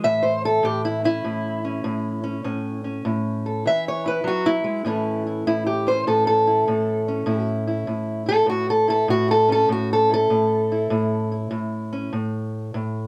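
Soulful and rollicking, this short cut from a longer acoustic country blues piece moves with a swung, loping feel in four. A lone fingerpicked steel-string acoustic guitar carries everything from start to finish, ranging from its low bass strings up into its upper register. Its tone is dark and woody with the boxy character of a parlour instrument, and the old strings give it a worn, lived-in voice. The harmony rests on A before shifting to E at 3.7 seconds and returning to A at 4.9 seconds, where the opening phrase begins again. Close, detailed microphones place the guitar up front, with only a light touch of reverb around it.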